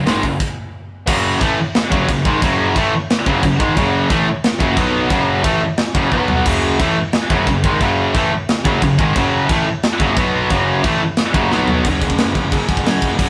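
A tight, up-front metal drum kit with bright cymbals and an airy big-room sound powers this dark, epic heavy metal excerpt at 178 BPM in F# minor alongside an up-front high-gain guitar riff that stops at 11.8 s, a double-tracked overdriven guitar and a scooped high-gain guitar set in the background, and a growly fuzz picked bass, with a brief stop before a half-time passage from 1.1 s and a drum fill at 6.1 s, in a rough rehearsal-room recording with saturated coloring and moderate reverb.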